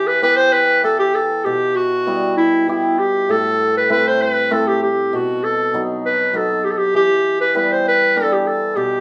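A clarinet and a hammered dulcimer begin together in this short klezmer fragment, cut from a longer piece, setting a bittersweet, soulful mood in E minor. The tune moves at 98 BPM in a straight 3/4, with the clarinet carrying the melody in a classical style, sitting up front as the solo voice with a warm yet distant, roomy tone. Beneath it, the acoustic hammered dulcimer supplies a shimmering, ringing accompaniment from lower in the register, mixed well behind the lead. The harmony moves from E minor to A minor at 3.3 seconds, then to B major before returning to E minor at 6.9 seconds. The two players sound as if performing live in one room, wrapped in a wet studio reverb.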